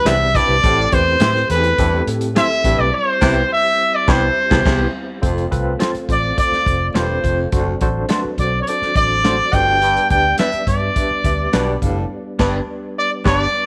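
Joyful, warm uptempo 1960s-style soul at 104 BPM in C major, cut from a longer piece, where a bright, punchy trumpet with light vibrato carries the melody up front over a baritone saxophone riff, dark slightly broken-up guitar stabs in the background, a worn, slightly out-of-tune tine electric piano with medium tremolo, a very quiet percussive tonewheel organ holding sustained chords through a fast rotary speaker, a round foam-muted fingered bass and a tight soul drum kit with dark cymbals in a pumping room, the chords moving from Cmaj7 and Am7 to F, D7/F# and G, with band accents at 2.9 and 12.1 seconds, all set in light studio reverb.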